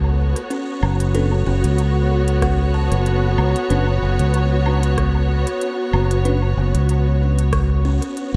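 A lightly swung groove of crisp hi-hat, rim click and woodblock soaked in dub echo, joined at 2.4 seconds by a dry, deep electronic kick in the background, carries this spacious, meditative ambient dub excerpt, where a punchy, tube-saturated fingered bass sits up front beneath lush bowed strings holding a Bsus2/F# chord, a buzzing, woody kalimba rings out echoing arpeggios, and a very quiet bell-like tine electric piano adds bright stabs from 1.1 to 6.4 seconds in a lightly reverberant, echo-heavy mix.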